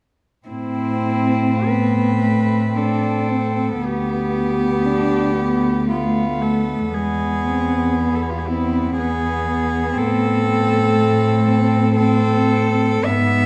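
Moving in a flexible, rubato three-four, this short passage from a longer classical work for cello ensemble unfolds at an unhurried, breathing pace with a melancholic, elegiac mood. Four bowed cellos, each a single player, sound together from 0.5 to 13.5 seconds. An up-front melody cello with a warm, airy bow and light vibrato sings in the upper range, while a distant second line floats beneath it with a rich, pure tone. Lower down, a dark accompanying cello with a smooth top sits in the background, and a close, intimate bass cello anchors the bottom. All four play sul tasto with soft attacks, and the harmony drifts away from its home chord before settling back on it at the close. A moderate recital hall reverb surrounds the ensemble in a shadowed, mellow production.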